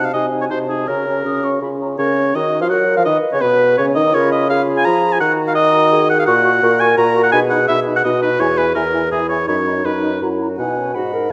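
In a quick, straight 3/4 at 167 BPM, this graceful, cheerful classical-period excerpt for wind quintet moves from F# major to B major at 6.3 s, with a close, warm oboe carrying the prominent second line up front over a distant, pure-toned flute melody with vibrato, a mellow clarinet with soft attack and a clear, roomy French horn in the background, and a bassoon with light vibrato anchoring the bass, all heard together throughout in a wet recital hall with lossy compression artefacts.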